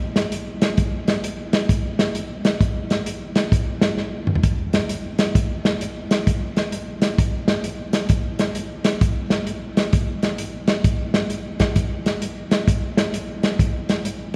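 Drenched in a long cathedral reverb, this short gospel cut from a longer piece sounds as if it were captured in a church or concert hall, giving it a reverent yet jubilant air. A muffled, lo-fi soul drum kit sits up front with a tight kick, a medium-tuned snare, hi-hat and toms, its rolled-off top lending it warmth as it swings steadily in 4/4 from 0.2 to 14.2 seconds. A brief drum fill arrives at 4.0 seconds.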